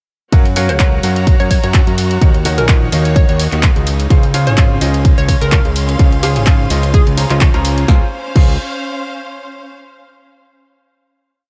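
A punchy, tape-warm four-on-the-floor kick drives this uplifting, feel-good piano house piece in Db major at 127 BPM with a light 16th-note swing, as a fat, saturated analog bass pumps beneath a clear, intimate grand piano riff with dub echo over Gbmaj7, Ebm7 and Dbmaj7, while a punchy analog drum machine adds claps, snare, hi-hats, ride and crash, a hollow, bouncy square pluck with subtle chorus sits in the background, lush bowed strings breathe with sidechain pumping, the full band hits an accent at 7.4 seconds, and the strings ring on through the final chord to 9.7 seconds.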